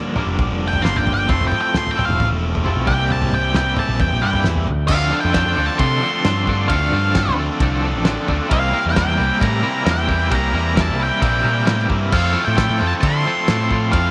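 A straight 4/4 groove from a cloth-damped, thuddy drum kit, with its fat snare, tight kick and dark cymbals, drives this bittersweet, restless indie rock excerpt, anchored by an overdriven, round picked bass sitting up front. A clean, twangy guitar with tremolo and a high-gain distorted guitar in the background, dressed in lush chorus and tape echo, play riffs over chords moving from Gm7 through Fmaj7 and C7, while an octave-fuzz lead guitar solos until 4.9 seconds. From there the harmony turns to Dm7 and a very quiet, punchy trumpet with vibrato adds a second line, all within moderate spring reverb and small room ambience.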